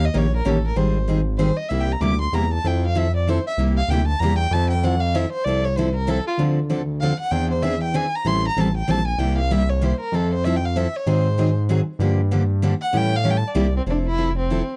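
Acoustic string swing in the jazz manouche style, playful and lively in a swung 3/4, with an expressive bowed violin soloing up front from the start until 13.9 seconds with vibrato and portamento, a bright, full-bodied picked steel-string acoustic guitar with audible finger squeak supplying accompaniment, and a smooth sawtooth-and-square synth bass with vibrato holding down the low end, recorded dry and close in a 1970s-style small room in this excerpt cut from a longer piece.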